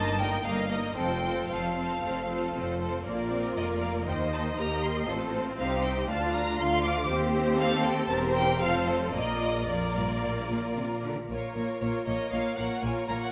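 A quick classical-period movement for string orchestra in Bb major, this spirited, cheerful passage moves at 117 BPM in 4/4 with a rubato feel, and it is cut from a longer piece. Up front, a rich violin section carries the melody with smooth, even vibrato, while a second violin section plays a lush, expressive second line beneath it. A clear, focused viola section supplies the accompaniment. The double bass section lays a smooth foundation alongside a cello section that sits in the background. The harmony wanders from Eb/G through F, Bb, Am7b5 and Dm before settling on Bb at 9.1 seconds, then darkens to Bbm at 11.3 seconds as a new section begins. A moderate scoring stage reverb gives the ensemble a sense of space.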